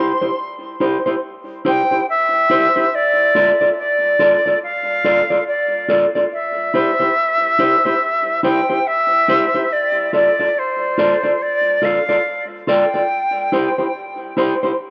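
A pure, expressive silver concert flute carries the melody with vibrato and tongued notes, its line softened by tape echo until 13.9 seconds. Beneath it, a dark, clean electric guitar plays fingered accompaniment, also touched by tape echo, as the harmony moves between C and D minor. This meditative, hypnotic reggae section in D minor moves at a slow 71 BPM with swung sixteenths, wrapped in a wet spring reverb and small-room ambience, and is cut from a longer piece.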